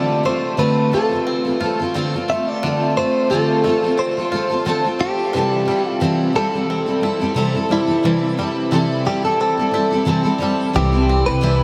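A dreamy, reverb-soaked mix opens this short pop excerpt, its huge ambient tail hanging over every note. At 89 BPM in 4/4 with a light sixteenth-note swing, the piece sits in A minor with a reflective, wistful mood, moving from Dm7 to Am7/C and arriving on C at 10.7 seconds. A bright, clean electric guitar recorded direct carries the melody between E4 and E5, compressed and dressed in lush chorus and a diffuse ambient delay. Beneath it, a double-tracked steel-string acoustic guitar with fresh strings and a full-bodied jumbo tone plays the picked accompaniment up front. A twangy bluegrass banjo, played with fingerpicks, adds percussive arpeggios further back in the mix, its notes trailing into its own diffuse delay. Only at 10.8 seconds does a woody, thumpy pizzicato upright bass step in on a low C.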